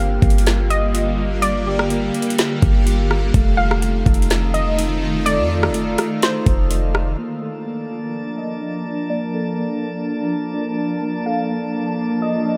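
A clean, boomy 808-style bass and an up-front trap drum kit with a knocking kick, woody snare, rim click and metallic hats anchor this floating, blissful cloud-rap excerpt in Bb major, moving at 125 BPM in a half-time feel through Gm7 and F7 before both drop out at about 7.2 seconds. Over them, a blurred, detuned granular cloud pad holds sustained chords with built-in reverb and sidechain pumping, while soft, round electric-piano-like synth keys play arpeggios with chorus, tremolo and tape echo. A warbling, lo-fi dusty pluck carries the melody, and a glassy harmonics texture drifts through the mix as a filter sweep runs across the Bbmaj7 closing stretch, all in a dry mix.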